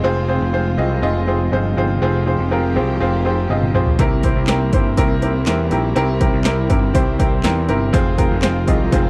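Piano-driven pop with an anthemic, uplifting mood, this short excerpt, cut from a longer piece, opens on a bright, woody upright piano with audible action noise and a slightly detuned, worn character, set up front over a growly, overdriven picked electric bass and lush bowed strings holding sustained chords in the background, moving from F minor to C7 and back. A punchy, layered house drum kit with handclaps, hi-hat, kick, snare and toms enters with a drum fill at 3.5 seconds, the tape-warm kit sitting up front with warm hats. The whole has the dry, close feel of a 1970s-style studio recording dressed in digital ambience.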